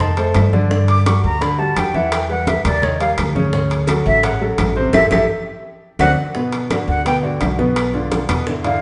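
A mellow, airy flute solo with vibrato and a soft attack opens this danceable, sophisticated Afro-Cuban jazz passage at 170 BPM in D major, over an intimate, up-front grand piano with audible action noise, a woody pizzicato upright bass, very quiet thick-skinned congas and tight, high-tuned bongos; ringing, saturated metal-shell timbales join at 0.2 s and dry background claves follow moments later, a drum fill and band accent arrive from 4.9 to 6.4 seconds, and the band sits in a wet stone-room reverb.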